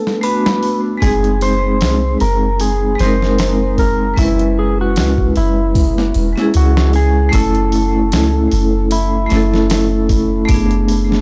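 A dry, gritty hardware sound with transformer saturation and a dulled top end gives this smoky, dark trip hop excerpt in F# minor its character, moving at 76 BPM with a lightly swung 16th-note feel. A metallic, ringing vibraphone struck with medium hard mallets sits up front with motor vibrato, tremolo and tape echo, while a clean, twangy lap steel carries the slide melody through dub echo. Compressed, pitched-down sampler drums bring a thumpy kick and medium-tuned snare, a deep, round 808-style bass arrives at 1.0 seconds, and the harmony moves to a new section at 7.3 seconds.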